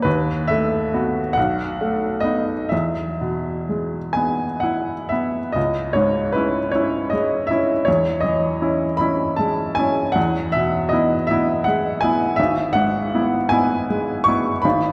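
A bright, woody upright piano sits up front in a wet church reverb with a 3.4-second tail, its action noise audible and intimate against the long decay. This dreamy, tender romantic nocturne for solo piano moves in a rubato 6/8 at roughly 41-56 BPM in dotted quarters, opening in E major before turning to C# minor at 5.6 s. The piano spans from a low G#1 up to a brilliant C#6, and the passage is cut from a longer piece, ending at 14.9 s.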